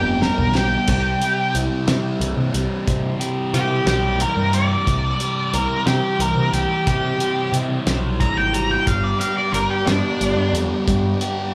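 Psychedelic rock in a hypnotic, trippy 6/8 groove, with an octave-fuzz lead guitar soloing up front through tape echo over a dark, double-tracked fuzz riff guitar tinted by phaser. A growling, overdriven fingered bass and a cloth-damped, thuddy acoustic kit with a fat snare, tight kick and rolled-off top come in from the start alongside an opening drum fill, as the harmony moves from G to C. At 8.9 s a reedy, bright tonewheel organ slips in behind with sustained chords through a slow rotary speaker, and the band sits in light small-room reverb.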